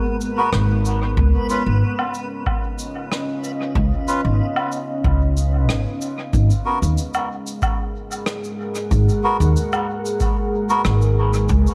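A woody, up-front upright bass anchors this meditative ambient dub excerpt, its low pizzicato notes carrying a touch of tube saturation beneath a deep, detuned pad of sustained chords moving from G#m9 to C#7 and back. Reedy, breathy melodica stabs drift through dub echo, while a dreamy reversed texture glimmers until 6.3 seconds. Shaker, rim click and woodblock with the natural feel of brushes, also soaked in dub echo, sit over a tape-warm electronic kick that arrives at 1.2 seconds, all in a spacious, lightly reverberant studio room.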